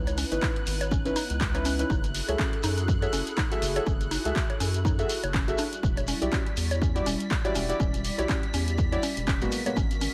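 A hollow, flute-like pad, a round, deep analog bass and a silky string machine open this hypnotic deep house passage at 122 BPM with a swung 16th feel, all three breathing with sidechain pumping as the harmony moves through C#m9, F#m9, Em9 and G#m9. A woody, percussive synth pluck plays chorused arpeggios with dub echo, while a punchy, tape-toned drum machine supplies handclaps and hi-hat, joined by a grainy shekere and, from 0.4 seconds, an up-front electronic kick. Deep, nasal chord stabs with a filter sweep, cassette tape colour and dub echo recur throughout, and a layer of vinyl crackle sits over the whole.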